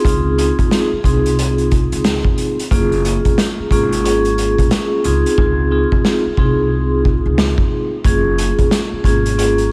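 A dreamy mix soaked in reverb, with vinyl crackle and a long cathedral tail, frames this nostalgic boom-bap hip-hop fragment cut from a longer piece. Soft-mallet vibraphone sits up front, its metallic, ringing tone mellowed by cassette tape and filtering, with a slow motor vibrato and an airy glow as it moves between Dbmaj9 and Gbmaj9 chords. Beneath it, a woody, thumpy upright bass on gut strings plays pizzicato in a dark low register. A vintage acoustic kit, also up front, brings a punchy kick, a medium-tuned snare and hi-hat in a small, pumping room with a rolled-off top, all riding a swung sixteenth-note feel. The hi-hats fall silent from 5.4 to 8.0 seconds, returning as the harmony moves back to Gbmaj9, while all three parts play through to 9.7 seconds.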